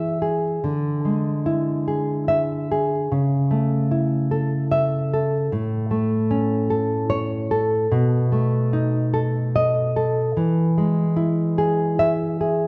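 In a rubato 3/4 at 74 BPM, this tender, nostalgic romantic piece for solo classical guitar in E major places a dark, full-bodied, thumb-plucked nylon-string guitar up front in the moderate reverb of a concert hall, moving from E through E7/D, A/C#, A and B7 back to E in a short passage cut from a longer work.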